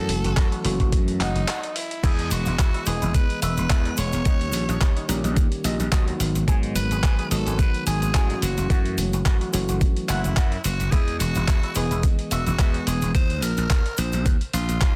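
Nu-disco with a sunny, feel-good lift at 108 BPM in E major, swung lightly on the sixteenths, this excerpt sets a raspy, edgy tenor saxophone melody with vibrato and tape echo over a bright, clean tine electric piano pumped by sidechain and colored with phaser and slapback echo, while a growly, overdriven slap bass sits up front. A thumpy electronic kick leads a dusty soul sampler-style kit of crash, handclaps and hi-hat, with a cabasa joining in the background from 2.0 s and a twangy envelope-filtered guitar riff picking quietly behind, all moving through F#m7, Emaj7, D#7 and G#m7, with a brief break at 1.5 s. The dry, dense and heavily limited mix keeps the kick and bass punchy, and the electric piano drops out at 13.1 s.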